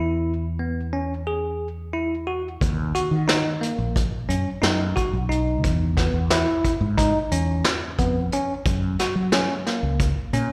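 A bell-like tine electric piano rings out bright, clean arpeggios with a slapback echo over a round, dark fretless bass in this driving progressive instrumental excerpt in 9/8 at 179 BPM in E lydian, joined at 2.6 seconds by a gritty, saturated brush drum kit with a punchy kick, all heard as a live gig through the venue's PA with recital-hall reverb.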